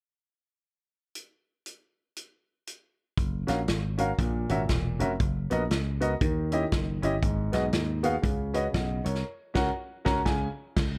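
This uplifting, jubilant piece of uptempo gospel, cut from a longer performance, opens with a natural country drum kit playing alone from 1.1 seconds: crash cymbal, hi-hat, a punchy kick and a medium-tuned snare, captured up front in an acoustic studio room with a gently swung eighth-note feel. At 3.2 seconds a dry, thumbed electric slap bass joins, bright, growly and foam-muted, sitting direct and forward in the mix. Moments later an intimate upright piano takes up the accompaniment, woody and polished, with audible action noise that gives it a close, present character. The harmony moves through rich sevenths and extended chords such as F#maj7, D#7b9 and C#9sus4, settling toward F#/C# and a closing C#5. From 9.2 seconds the whole band hits a shared accent, and the light reverb and small-room ambience frame a dark, warm production.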